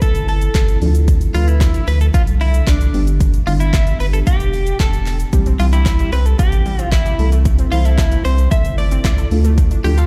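A bright, twangy twelve-string electric guitar with tape echo carries the melody in this euphoric, carefree dance-pop excerpt, over an up-front deep house kit of deep kick, woody snare, dark hats, handclaps and shaker, a round analog bass, soft chorused chord stabs and a glassy, ethereal FM pad, all three pumping against the kick, while a very quiet, grainy egg shaker ticks beneath and a crystalline wavetable pluck adds arpeggios from 5.3 seconds, the whole mix sounding as if played on a big sound system in a bare room with a large studio reverb.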